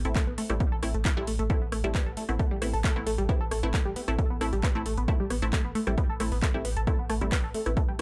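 Driving peak-time techno at 134 BPM in A minor, this hypnotic, intense cut from a longer piece rides a single Am chord, with a punchy, up-front electronic kick entering at 0.2 s over a deep, round sine sub bass that pumps from sidechaining beneath a low-pass filter. A techno drum kit adds handclaps, rim clicks and metallic, pumping hi-hats, while a tight sawtooth-and-pulse sequenced riff, detuned and wave-folded, spans G3 to A4 through chorus, phaser, tube saturation and tape echo, and a muted, resonant dub chord stab with a short decay sits between A3 and E4, treated with phaser and analog delay. The sound is dry and gritty, a hardware recording with transformer saturation and little reverb.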